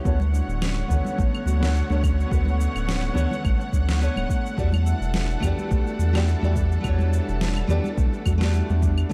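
The sub bass stands out most, sitting up front with a deep, round, sine-like tone, tube saturation and a fast attack on sustained notes. Around it, this short excerpt of wistful, warm sunset chillout moves at 106 BPM in 4/4 with a light 16th-note swing, turning from Bm9/D to Em11 at 4.6 seconds. A bright, full-bodied nylon-string guitar plays fingerpicked accompaniment through a low-pass filter sweep and delay, while a lush, distant string section holds bowed chords with vibrato. A thumb-plucked Celtic harp rings out arpeggios with delay in the background. The electronic kick is layered and tape-warm, joined by an electronic cabasa, a deep snare and claves, while thin-skinned, medium-tuned congas sit far back in a small room. The dark production carries light reverb.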